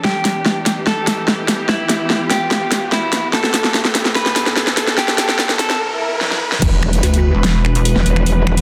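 A metallic, aggressive FM wobble bass, saturated with overdrive and chorus, arrives at the drop at 6.6 seconds alongside a punchy electronic kick, joined briefly by a pulsing, detuned pluck wobble bass in this heavy, menacing half-time dubstep excerpt. Before that, a dark, clean picked electric guitar carries a delayed melody over lush bowed strings that pump under sidechain and a low-pass filter, while an up-front drum kit with a huge snare, hi-hats, crash and finger snaps plays fills and background risers and a swell build the tension. The dense, heavily limited mix sits in a moderate room reverb, moving from Em and Amadd9 to a stark E5 at the drop.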